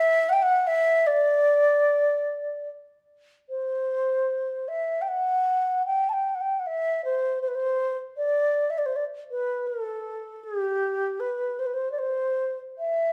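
Nostalgic and pastoral, this Celtic folk fragment, cut from a longer piece, moves in a rubato 3/4 at roughly 69-81 BPM, tuned to A4 = 439 Hz. A lone baroque flute carries the tune from G4 to A5 for the full 13.1 seconds, its woody, airy, mellow tone shaped by vibrato and tonguing, placed up front yet with a faintly distant, expressive quality. The opening phrase returns at 3.5 seconds, and a moderate recital-hall reverb lends the solo a soft bloom.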